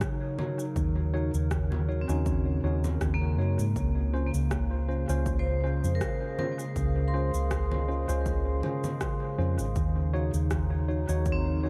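A swung sixteenth-note groove of punchy, layered electronic kick and tape-tinged rim click, shaker and congas with dub echo carries this spacious, deep ambient dub fragment, where a warbling, nostalgic lo-fi pad with chorus holds sustained chords moving between Ebm7 and Dbmaj7, a worn, slightly out-of-tune tine electric piano adds lightly overdriven stabs with dub echo from 0.4 s, a dark, round hollow-body fingered bass sits up front from 0.8 s, and bright, ringing hard-mallet vibraphone arpeggios with tape echo arrive at 2.0 s, set within a light reverb.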